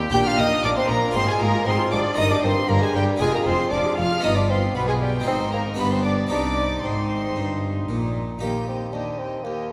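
A stormy, dramatic baroque-style concerto movement in C minor, this short passage cut from a longer piece moves at 116 BPM in a straight 4/4. A solo bassoon with light vibrato carries a melody in its mid register and sits forward in the balance, while a chamber violin section with a rich, gut-string period tone sings the upper melody. Behind them, a second violin line, a dark, distant viola section and a cello section fill out the harmony and bass in the background. A double bass section anchors the low end until 8.4 seconds, and a close-miked, dry harpsichord with a full, plucked Italian-style sound supplies the continuo accompaniment. The harmony passes through chords such as Fm6, G7 and Cm before arriving on Eb at 8.4 seconds, and a hall with a long, wet reverb surrounds the ensemble.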